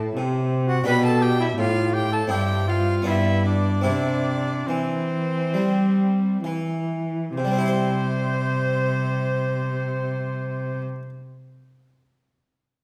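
A rich, smooth bowed cello sits up front with the bass line alongside an airy, full harpsichord in this serene, flowing baroque-style sonata movement with continuo, cut from a longer piece. From 0.7 seconds a clear, focused violin carries the melody with vibrato, while a close-miked oboe with a soft attack and light vibrato adds a second line. The music gradually slows until a new section begins at 7.4 seconds, all within a wet recital hall reverb.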